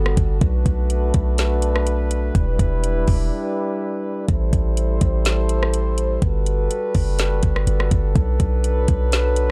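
Spacious and melancholic, this atmospheric cloud-rap excerpt moves at 124 BPM in a half-time 4/4 feel, with a mellow, tight brass section holding sustained chords that pump against the sidechain. A deep, boomy 808-style bass with a sine tone and fast, decaying attack sits up front alongside a smooth R&B drum kit of soft kick, woody snare, metallic hats and rim click, which enters at 0.1 seconds. The dark, dry production carries a brief break from 3.3 to 4.3 seconds as the chords move from Bm7 through Em7, Am7 and Gmaj9 back to Bm7.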